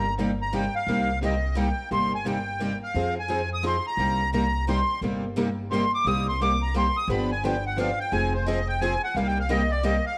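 Fiery and bittersweet, this brief excerpt of acoustic string swing in jazz manouche style moves at 174 BPM in a swung 3/4 in C minor, with a reedy, sweet accordion soloing up front on the melody across the full 10.2 seconds over two picked steel-string acoustic guitars, one dark and concert-sized, the other bright and boxy with fresh strings and finger squeak, and a woody, thumpy pizzicato upright bass on gut strings, all set in a small room with a wet echo-chamber reverb as the chords cycle from Cm7 through Fm7 and G7 back to Cm7.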